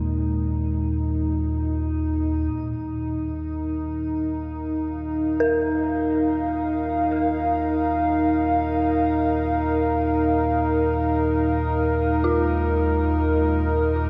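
Desolate and ominous, this dark ambient drone in free time sets a moody, detuned analog pad holding sustained chords with chorus and shimmer reverb up front over a deep, warbling rumble of drone that gains a filter sweep from 2.5 seconds, while an eerie, inharmonic synth bell enters at 5.4 seconds with arpeggios drifting in the background through chorus, tape echo and shimmer reverb, all bathed in a cavernous cathedral reverb and the hazy grain of cassette tape, cut from a longer piece.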